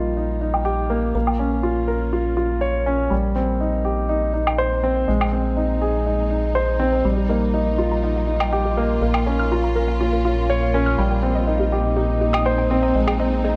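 A dark, lightly reverberant production frames this moving, hypnotic piano and strings electronica excerpt, where an up-front concert grand with short sustain and digital delay plays a riff over lush, woody bowed strings fading in on sustained chords and a round, deep analog bass with tube saturation, while a tape-colored electronic woodblock recurs in brief bursts through a filter sweep and a warbling, lo-fi pluck with chorus adds arpeggios in the background from 7.2 s.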